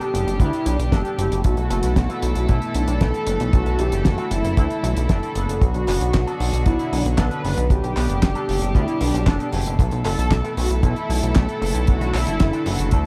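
A glossy, nasal chorused synth bass with tube saturation sits up front in this melodramatic, bittersweet italo disco excerpt alongside a damped 70s kit of fat snare, hi-hat and handclaps, joined from 0.4 s by a tight, dark kick drum, while a round, detuned synth brass melody with vibrato and 12-bit sampler grit sings over reedy, gut-toned sustained strings and twangy, envelope-filtered electric guitar stabs with harmonic tremolo, in a dry, close 1970s-style studio recording as the chords move from G to Bm and back.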